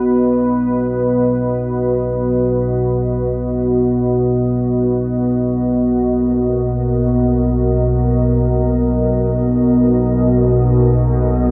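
Soaked in a wet, cathedral-like reverb with a 4.9-second decay, this ominous, unsettling dark ambient drone in free time and B major pairs a deep, moody pad with an evolving analog drone that fades in across the full 11.5 seconds. The pad sustains chords from B3 to D#5 in detuned sawtooth unison layers with a sine sub octave, chorus and its own reverb, while the drone uses sawtooth and pulse-wave tones with pulse-width modulation and chorus, all cut from a longer piece.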